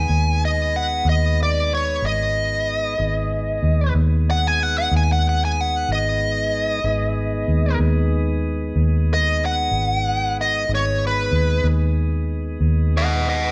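A soulful, brooding slow blues opens with a full trio sounding together from the first moment: a smooth, overdriven lead guitar, a tonewheel organ and a muted electric bass. The guitar carries a picked solo melody through the whole 13.5 seconds, singing up front between B4 and G#5. Beneath it, the bass is dark, round and foam-muted, sitting prominently in the low register from G#1 to D#2, while the clean organ holds sustained chords quieter in the mix, turning slowly through its rotary speaker. The groove moves at 62 BPM in a straight 12/8, resting on a single G# minor chord throughout. The band plays live in one room with moderate stone reverb, and the passage is cut from a longer piece.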